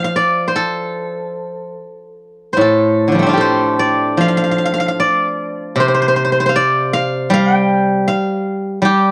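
Chinese traditional solo plucked-string music, longing and elegant, unfolds in a free rubato around 71-81 BPM in this short fragment cut from a longer piece. A steel-string zither plays alone throughout its 9.1 seconds, its fingerpicked tone ringing and silvery, placed up front and spanning A2 to G5. The sound sits in a modest booth ambience and carries the worn character of old cassette tape, with a warbly pitch drift running through it.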